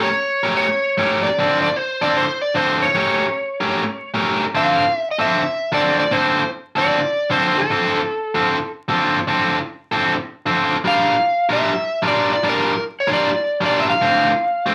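Vinyl crackle and a moderate studio ambience frame this soulful, mournful swung blues fragment, where a warm, fingered slide guitar with overdrive carries the melody up front while a bright, picked, overdriven electric guitar plays the riff throughout, both moving over A7b9 and Dm7 chords before a Gm7 arrives at 10.9 seconds.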